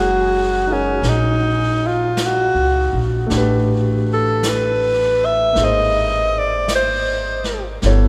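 Bathed in the long, wet bloom of a cathedral-like hall, this tender, intimate jazz ballad excerpt features an up-front, breathy alto saxophone singing the melody with light vibrato and a soft attack over a concert grand piano with deep bass, a woody, growly pizzicato upright bass, and a vintage brush kit with a rolled-off top that enters at 1.0 seconds, while the saxophone stops at 7.6 seconds.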